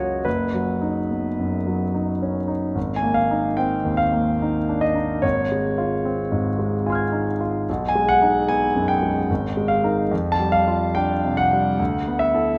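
Impressionist solo classical piano, dreamy and luminous, drifts at a rubato 73 BPM in 3/4, tuned to A4 = 437 Hz, in a 12.6-second passage cut from a longer piece. A concert grand sits up front and intimate, spanning F#1 to G#6 with deep bass, long sustain and audible action noise, as colourful harmonies such as B/F#, G#69, C#maj7/G# and D69 glide by. A moderate concert hall reverb of 1.9 s surrounds the polished tone, and the top end rolls off above 10.4 kHz.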